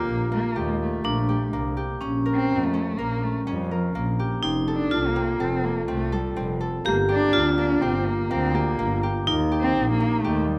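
A dark, nasal cello carries the melody, bowed by a single player with vibrato, portamento and a smooth, expressive top. This is contemporary chamber music in 5/4 with a straight feel and a shimmering, hopeful mood. A bright, metallic vibraphone, struck with hard mallets and its motor off, rings out a second line beside the cello. A concert harp supplies fingerpicked, ringing arpeggios, and a clear, intense double bass, also bowed with vibrato, joins at 0.1 s to hold the low end. A brief opening on Ebmaj9#11 gives way at 2.0 s to a passage moving through Bbm, F and Gm7 before settling on Eb. Close, detailed microphones catch each instrument inside a moderate recital hall reverb, and the recording is cut from a longer piece.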